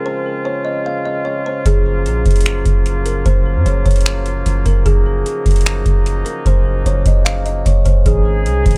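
A half-time groove in 4/4 at 150 BPM arrives at 1.7 s, when a booming analog drum machine sets a deep kick, metallic hi-hats and finger snaps up front, its tape-tinged tone carrying the feel of a small room. A soft 808-style bass enters alongside it, round, dark and sine-like, with a fast attack that decays away beneath the beat. Before that, this dreamy, blissful slice of atmospheric cloud-rap opens on a woody, ringing kalimba melody played through a low-pass filter and tape echo, set over sustained chords from a vintage brass ensemble with light vibrato and sidechain pumping. The harmony in Gb lydian moves from Dbmaj7 to Gbmaj7, then touches Absus4 just before the clip, cut from a longer piece, ends. An echo-heavy digital ambience wraps the whole mix in a hazy, floating space.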